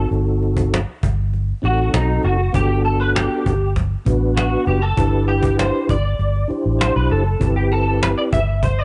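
An electric guitar played through a small old amp sets this sunny, nostalgic bedroom-pop excerpt in G major at 99 BPM, playing fingered accompaniment across the full 8.8 seconds in a dark, slightly broken-up, lo-fi tone with ensemble chorus and a warbly pitch drift, while a clean electric guitar solo runs throughout. A mellow tonewheel organ shares the accompaniment, its soft, flute-like voice colored by chorus vibrato, key click and a stopped rotary speaker, before it drops out at 8.4 seconds. Underneath, a vintage muted fingered electric bass sits up front with a round, foam-muted sound. A cajon joins at 0.1 seconds with woody, compressed, saturated soft-hand strokes and faint snares. The straight 4/4 indie-pop feel moves through a rootless B7b9/G, Gmaj9, Cmaj9/G and Am9/G, all in a lightly reverberant, softly rolled-off mix.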